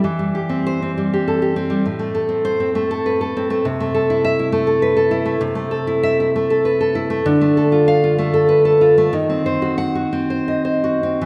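A nylon-string classical guitar plays alone, fingerpicked and up front, with a warm, full-bodied tone and fresh strings. This romantic solo piece moves in a flexible 3/4 with rubato phrasing, its tempo ranging between 75 and 105 BPM, and the mood is wistful and intimate. The guitar spans from A2 up to F#5, and the harmony passes from C/E through Am and Am/C to Dm, then moves to D#m6 near the end. The playing sits in a generous concert hall reverb with a two-second decay, giving the sound the open air of a church or hall. This brief passage runs 11.3 seconds, taken from a longer piece.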